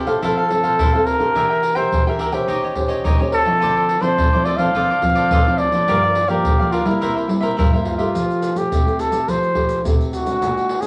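A straight four-beat samba groove from pandeiro, a tight surdo and maracas comes in at 0.1 seconds, sounding acoustic and set in a large room, in this festive, playful short clip cut from a longer samba and choro piece. Over it, a mellow, breathy trumpet carries the melody up front in a jazz style, with a soft attack, light vibrato and scooped notes that feel whispered and intimate. A classical nylon-string guitar, thumb-plucked with fresh strings and a warm tone, supports the harmony throughout, while a bright, crisp, picked cavaquinho adds accompaniment until it drops out at 8.1 seconds. At that point the music moves into a new section, landing on Fmaj9 after a harmonic path running from Fmaj7 through Em7b5, Eb13, Dm9, Gm7 and C7. The whole clip sits in a wet studio reverb, along with a layer of vinyl crackle.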